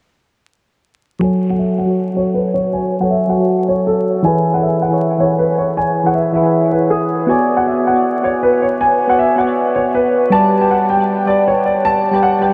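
A half-time 4/4 feel sets a hip hop pulse under this melancholic, eerie fragment from a longer piece, which cycles through F#m, E, Bmadd9 and G. From 1.2 seconds a dark, mellow concert grand piano carries the melody up front with deep bass, shaded by lush chorus, a low-pass filter and tape echo. Soft, round electric-piano-like synth keys accompany it with a gentle, full-bodied tone, quick attack, decaying notes and their own chorus and filtering, while a filter sweep runs until 12.5 seconds through a dreamy mix soaked in huge ambient reverb and vinyl crackle.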